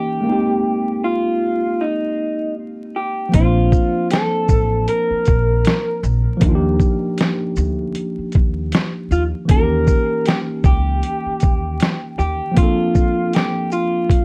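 Swung sixteenths at a relaxed 78 BPM in 4/4 give this mellow, cosy lo-fi hip hop fragment its lazy sway, with a muffled, compressed sampler-style drum kit of thumpy kick, medium-tuned snare, hi-hat and shaker arriving at 3.3 s alongside a woody, growly pizzicato upright bass that drops out at 12.4 s. Up front, a dark, slightly broken-up electric guitar through a small old amp carries the low-passed melody, while a worn, slightly out-of-tune tine electric piano with cassette-tape softening and a low-pass filter comps through chords moving from Abmaj7 to Bbmaj9, Ebmaj9 and Eb7b9. Vintage 12-bit grit roughens the drums, and light reverb and vinyl crackle lend the whole a dusty haze.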